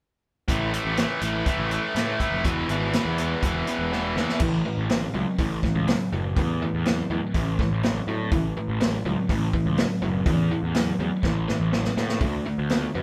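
A straight 4/4 groove at 123 BPM drives this gritty, swaggering slice of blues rock and southern rock, played live in one room by a power trio with moderate studio reverb. An up-front, bright, double-tracked overdriven guitar riff and a growly, picked fuzz bass move from A5 through E into a new section at 4.4 seconds, later landing on D5. A vintage acoustic kit with a medium-tuned snare, punchy kick and rolled-off top sits up front and adds drum fills at 3.9 and 11.2 seconds.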